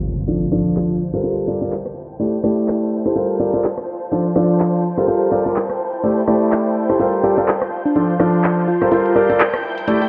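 Bathed in a lush hall reverb and passed through a low-pass filter that sweeps across the whole excerpt, this bittersweet, soulful piano house cut at 125 BPM in G dorian opens with an electronic impact that lasts until 1.2 seconds. An up-front concert grand piano with deep bass and delay plays the riff over Dm7/F, Gm11 and Am7 chords, driven by a punchy, tape-warm analog drum machine of handclaps, hi-hat and rim click with a swung 16th feel. Distant, bowed symphonic strings with vibrato and shimmering vintage sawtooth string-machine violins with ensemble chorus sit in the background, joined at 7.2 seconds by a sparkling, bell-like FM electric piano melody with chorus and delay.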